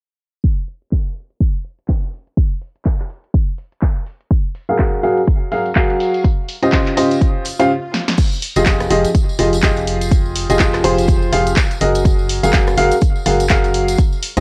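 This piano house cut opens at 0.4 seconds with a punchy, layered electronic kick up front and a tape-warm analog drum machine of crash, handclaps, hi-hat, rim click and snare, all under a filter sweep that carries the first section. A tambourine joins quietly in the background at 4.3 seconds. Then a clear, woody upright piano sits up front with its riff, its action noise audible and its tone colored by cassette tape, tape echo and sidechain pumping, moving through Gbmaj9 and Dbmaj9#11 chords in F phrygian. Around 7.5 seconds a background electronic swell appears as the music briefly stops and a drum fill leads into the next section. A hollow, dark, organ-like FM bass with a fast attack and a decaying tone enters at 8.6 seconds, pumping under Fm9 and Gbmaj9. At 124 BPM with a 58% swing on the sixteenths, the excerpt feels energetic yet bittersweet, with a light reverb and a low-passed home-cassette sound.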